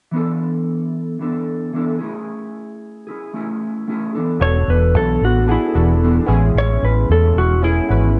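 A clean lap steel guitar carries the melody in this laid-back, dreamy bedroom pop excerpt, its compressed slide lines played with fingerpicks and bathed in lush chorus and tape echo. The piece opens at 0.1 seconds with a mellow, dark electric guitar playing fingered accompaniment alone, colored by lush chorus and a vibrato effect. At 4.4 seconds the lap steel arrives along with a vintage muted fingered electric bass, round and up front, and analog keys whose detuned sawtooth and sine tones are wave-folded, shaped by a filter sweep and softened further by chorus and cassette tape. The harmony drifts between E7sus4 and Amaj7 over a gently swung sixteenth-note feel in 4/4. Light reverb and a hazy cassette-tape sound, with the treble rolled off above 10.7 kHz, give the whole mix a soft, faded glow.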